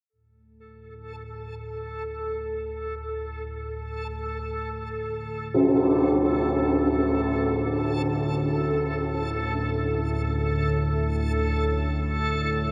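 An up-front analog drone of detuned sawtooth and pulse waves, thickened by lush chorus, fades in from the depths of this cavernous, desolate dark ambient passage in free time, a slow-attack D5 chord held low and slowly evolving. Beside it a reversed, granular swelling texture of detuned triangle tones sustains on a bright, dreamy A4, and a single filtered tam-tam stroke sounds at 5.5 s. The whole fragment, tuned to A4 = 439 Hz and cut from a longer piece, sits in a huge, wet reverb with an 8.2 s decay.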